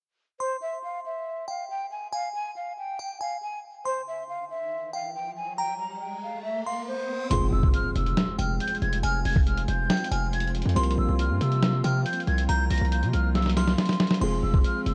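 A half-time trap pulse drives this dark, eerie hip hop cut, though the beat only arrives at 7.3 seconds, when a dusty, sampler-style drum kit hits up front with a thumpy kick, a medium-tuned snare, hi-hat and crash, sounding gritty and compressed as if re-recorded in a small room. From the opening, a breathy, hollow jazz flute with vibrato carries the melody from 0.4 seconds through a low-pass filter, joined by a glassy, crystalline FM synth bell whose second line is treated with chorus and tape echo. An electronic riser builds from 5.4 seconds into an impact that opens the second half. There, a heavy, aggressive 808-style bass with distortion and a saturated noise layer sits as loud as the drums, while a mellow, vintage baby grand piano adds filtered accompaniment and a muted, veiled string section holds distant bowed chords. The harmony moves from Fmadd9 to C7sus4 and settles on Fm after a short drum fill, all in a dry, dark mix that feels pulled from a longer piece.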